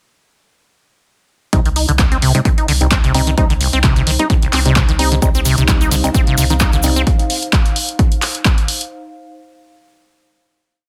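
A squelchy, resonant sawtooth acid bass leads this driving, hypnotic 130 BPM acid house piece in C minor from 1.5 s, its tube-saturated, tape-echoed seven-step loop drifting against the bar over a round sine sub bass, an overdriven four-on-the-floor electronic kick, and a dry analog drum machine's handclaps and hi-hats, while hollow, phased organ stabs move one chord shape in parallel, an airy, breathy pad drifts in the background from 2.8 s, and a lush vintage string machine and grainy, close cabasa sixteenths join at 5.2 s.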